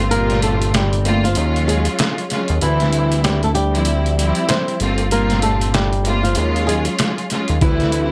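A lightly reverberant, gritty boom-bap hip-hop excerpt with a dark, swung feel, built on a compressed, pitched-down sampler-style drum kit with a thumpy kick, a fat, detuned sawtooth bass with a filter sweep, a lush bowed string section tinted by cassette tape, a fingerpicked flamenco guitar melody with delay and audible finger squeak, and a very quiet finger snap heard from 0.7 to 7.2 seconds.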